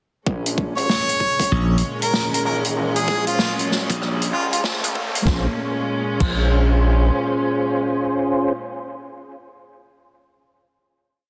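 Funky and gritty, this short glitch hop piece moves at 96 BPM in Bb minor with a swung 16th feel, built on an overdriven, knocking electronic kick, a warm vintage kit of rim clicks, closed hats, snare and dark crashes, and chopped phrases from a saturated sawtooth synth bass and a growly, punchy slap bass. Over a distant, reedy string pad that pumps to the kick, a bright, close-miked harmonica plays short jazz-style phrases with scooped notes and delay, while a round tonewheel organ with slow rotary speaker adds sparse, echoing rootless stabs. A background riser drives the build from 1.3 to 5.3 seconds, where the piece settles onto a final chord carried by organ and strings, which ring until 8.5 seconds, all in a lush hall and a dense, heavily limited master.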